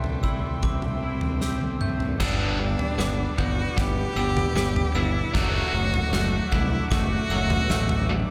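A huge arena drum kit stands out, its punchy kick, medium-tuned snare, toms and bright crash cymbals pumping in a hall-like space through this hopeful, cinematic post-rock passage at 76 BPM in 4/4, G major, cut from a longer piece. A clear, focused cello carries the melody with vibrato and tape echo, bowed close by one player, while a growling fingered electric bass, overdriven and direct, holds the low end. Behind them, a chamber string section with a reedy, gut-string period tone sustains chords, a glockenspiel struck with brass mallets rings out sparkling arpeggios with tape echo, and a twangy clean electric guitar adds fingered arpeggios through analog chorus and tape echo. After a drum fill from 1.4 seconds, a tight, picked distorted guitar enters with a riff at 2.2 seconds as the build-up begins, the harmony moving from C6 to G and then Dadd9/F# at 5.3 seconds. The mix sits in light, small-room reverb.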